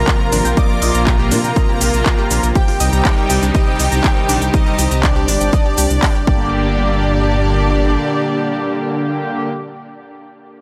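Melodic techno at 121 BPM in G minor, hypnotic and dramatic, cut from a longer piece, where an overdriven, heavy kick drives a drop with handclaps, smooth hats and shaker until about 6.4 seconds, while a deep, rumbling detuned saw bass, brassy warbling pad stabs, a bright analog pluck arpeggio in the background, a nasal, expressive lead melody with vibrato, a soft supersaw line above it and intimate bowed chamber strings all pump with the sidechain in a dry, gritty mix, the chords moving from Bbsus2 to Cm to Gm.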